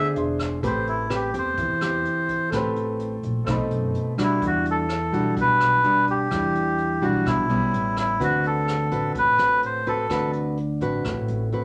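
A straight 4/4 bossa nova groove at 127 BPM in E minor carries this smooth, intimate fragment, where a reedy, breathy melodica sings the melody up front until 10.3 seconds, a fingerpicked classical nylon-string guitar and a woody, growly pizzicato upright bass accompany throughout, a clear, long-sustaining baby grand piano adds color only until 4.4 seconds, and a distant, roomy brush kit with a boomy kick, hi-hat and rim click enters at 0.2 seconds, the whole set in a wet studio ambience over jazzy chords such as Am9, B7b9 and Em9.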